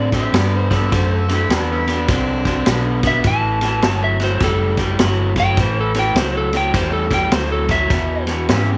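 A swung 4/4 shuffle at 103 BPM drives this soulful, swaggering electric blues fragment, cut from a longer piece. The vintage drum kit sits up front with a punchy kick, medium-tuned snare and a dark, rolled-off ride cymbal. Beneath it, a round, foam-muted fingered bass gives an amped, shadowy low end. A bright, crunchy overdriven guitar plays the riff up front, while a compressed, slightly broken-up lead guitar with a subdued tone carries the melody above it. An amplified, gritty harmonica with tongue slaps and a soft attack adds a jazz-tinged second line through analog delay, sounding from 0.2 to 2.9 seconds and returning briefly at 8.5 seconds. The harmony moves from D9 to A7 and lands on E, heard in a small room with light reverb.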